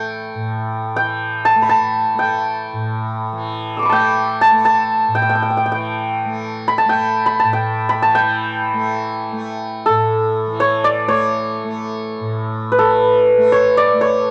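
Moving in a straight three-beat metre at about 122 BPM and gradually speeding up, this meditative, serene piece of Indian classical music is set in raga Khamaj on A. The santur carries the melody from start to finish, sitting up front with a hammered, ringing tone that spans A4 to E6 and has a cassette-tape colouring of its own. Beneath it, a mellow tanpura sustains a softly plucked, buzzing drone between A2 and A3, quieter in the mix and adding a shimmering bed. The music moves into a new section at 8.1 s and continues until the cut at 14.3 s, as this is an excerpt from a longer performance. The home cassette recording sounds dull at the top end, with a moderate studio reverb lending a gentle sense of room.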